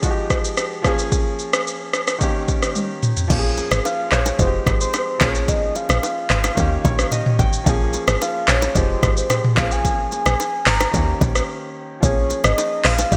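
Afrobeats at 110 BPM in Bb dorian, mellow and hypnotic, cut from a longer piece, where a clear, intimate grand piano with audible action noise and an overdriven, gritty afro-pop drum kit with deep kick, metallic hats and gated reverb open together before a woody, punchy log drum bass and very quiet ringing congas and bongos join at 3.3 seconds, then a soft, round octave-layered synth lead with chorus, delay and vibrato takes the melody at 3.9 seconds over cycling Fm9, Bbm7 and Eb7 chords, a piano fill and a brief break, all set in a lush hall and a bright 1980s-style digital sheen.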